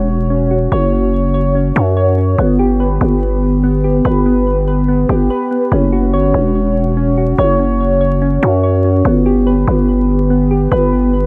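Dark, melancholic trap hip hop at 144 BPM in a half-time feel, this passage cut from a longer piece sets soft, round electric-piano-like synth keys playing arpeggios through chorus, phaser, a low-pass filter and tape echo over a growling, buzzy 808-style bass, both up front in a moody production with light reverb and vinyl crackle, pausing for a brief break at 5.3 seconds before moving into a new section at 5.7 seconds.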